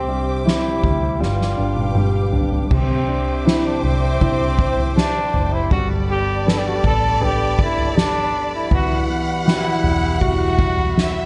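A brilliant, roomy trombone carries the melody up front from the first moment, touched by digital delay, over a tender pop ballad bed of intimate concert grand piano with audible action noise, thumb-plucked nylon-string guitar arpeggios with finger squeak, a dark, woody string section holding soft-attack sul tasto chords, and a round, foam-muted electric bass. At 80 BPM in a straight 4/4, the emotional mood settles over chords moving from Cadd9 to G7 and back, then on to Gadd9 and Emadd9. A soft-mallet drum kit enters at 0.5 seconds in a big room, with a boomy kick, fat snare, toms and crash cymbal, and plays a fill from 1.2 to 2.7 seconds. At 2.7 seconds a distant violin section joins with an expressive second line full of vibrato and portamento. Light reverb and a smooth, rolled-off top give the brief passage, cut from a longer piece, a lush, gentle sheen.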